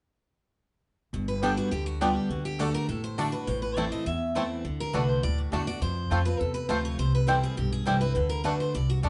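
Bluegrass in G major at a brisk 205 BPM, virtuosic and lively, with a full-bodied, up-front jumbo acoustic guitar picking the melody alongside a twangy fingerpicked banjo, while a dreadnought guitar picks out the accompaniment, a mandolin adds woody double-string stabs, and a thumpy gut-string upright bass anchors a G, D, Am, D, F, C, D progression, all caught as a band playing live in one room with moderate studio reverb.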